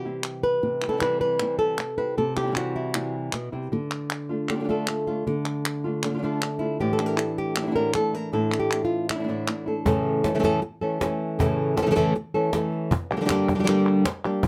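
A bright, boxy flamenco guitar leads this passionate, fiery flamenco excerpt, fingerpicking an up-front melody at 156 BPM in a straight 4/4, with finger squeaks audible on the strings. Beneath it, a second fingerpicked flamenco guitar with a warm tone plays stabs over a progression of C, Dm and Asus4, while crisp, close and dry palmas hand claps sit up front. At 9.9 seconds the stabs stop and a snappy cajon with snares enters, struck with hard hands in a small room, as the harmony moves to A and then Gm. The claps drop out briefly and return at 12.9 seconds to join the cajon under the lead guitar. Close, detailed microphones and light reverb keep the acoustic playing intimate, and the tuning sits slightly low at A4 = 436 Hz.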